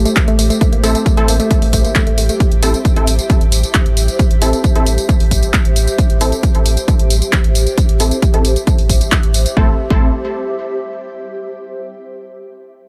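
A round, sine-based sub bass and a cloudy, blurred granular pad open this dark, hypnotic slice of driving peak-time techno in straight four, both pumping against the sidechain while the pad slowly evolves in its own reverb. A punchy analog drum machine with gritty handclaps, hi-hat and tambourine arrives almost at once, and a heavy, overdriven electronic kick settles up front a moment later. A woody, warbling wave-folded pluck carries a short riff with a vintage cassette-tape character, chorus and delay, dropping out after 2.3 seconds and returning at 9.6 seconds. An aggressive, thick rave stab of detuned sawtooth voices, bright with chorus, reverb and delay, enters shortly after the opening and gets a long filter sweep through the first section. The mix stays dry and close, and the mellow pad is the last part heard, lingering to 11.3 seconds in this cut from a longer piece.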